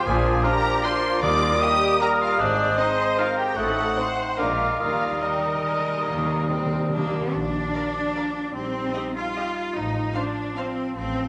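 Swaying in a rubato 3/4 at 133-167 BPM, this elegant, festive classical excerpt in Eb major sets a lush violin section melody with portamento over clear background violins, a pure distant flute, mellow clarinet, a cor anglais, a roomy bassoon, clear violas, tight French horn chords, rich cellos, focused double basses and closely miked timpani with a fill from 4.8 s, before the woodwinds stop near 7.1 s and the strings and horns move into Bb major from 7.3 s in a reverberant scoring-stage space.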